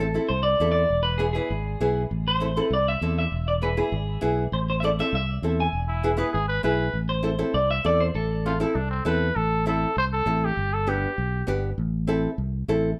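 Passionate and driving, this Latin cut from a longer piece opens with a dark, clean electric guitar carrying the melody through spring reverb, over a small, fingerpicked nylon-string guitar and a round, punchy fingered bass, all up front as the harmony rocks between Am and E. A clear, vintage-sounding trumpet with vibrato and scooped notes enters as a second line at 5.9 s. After the electric guitar drops out at 9.0 s, the trumpet takes a forceful, jazz-style solo from 9.4 s, with a moderate studio reverb around the band.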